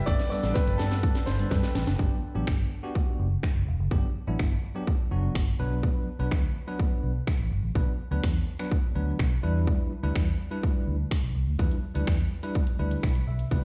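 This summery, carefree dance-pop fragment opens on a clear, intimate baby grand piano melody with audible action noise and a dub echo trail. Beneath it sit a lush, detuned sawtooth pad, very quiet and slow to bloom, with chorus and phaser, and a ringing, fingerpicked concert harp in the background, its arpeggios pumping to the sidechain and echoing. The piano stops at 1.8 seconds and the pad at 2.0 seconds. From 0.1 seconds a punchy, overdriven house drum kit drives a straight four-four groove up front, opening with a fill and layering a cracking snare with hi-hat, shaker and finger snaps. A dark, round, foam-muted fingered electric bass and a bell-like, clean tine electric piano both pump with the sidechain as the chords move from Gadd9 through Gmaj7, Bm and Em7, and the electric piano plays a short fill near the end. The mix has the sound of a big system playing into a bare room, with a large studio reverb.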